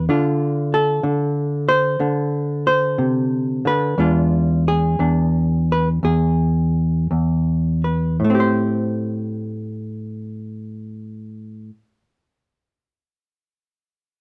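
A clean, fingered hollow-body electric jazz guitar sits up front in this smoky, moody solo jazz excerpt in A minor, swinging its eighth notes at 54-63 BPM in 4/4 and slowing down through the first 8.2 seconds over Dm7 and E7b9 before settling on Am7, tuned to A4 = 435 Hz and ringing until 11.8 s within light reverb and a dark, warm production.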